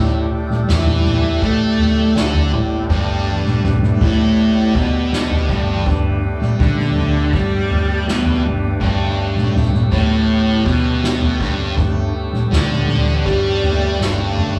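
Hypnotic and kaleidoscopic, this psychedelic rock excerpt moves at 81 BPM in a straight 4/4, shifting from A7sus4 to Gadd9 as a thick, double-tracked fuzz guitar sits up front with a phaser-coloured riff over a dark, round, foam-muted electric bass that stays very quiet. A buzzy vintage combo organ holds sustained chords with light vibrato, while a shimmering tanpura drone hums in the background and, from 0.9 seconds, high-tuned congas played with soft hands are barely audible. A distant, roomy soft-mallet drum kit with a fat snare and punchy kick enters at 0.5 seconds and closes with a fill at 14.0 seconds, the whole band captured live in one room and bathed in a large, wet studio reverb.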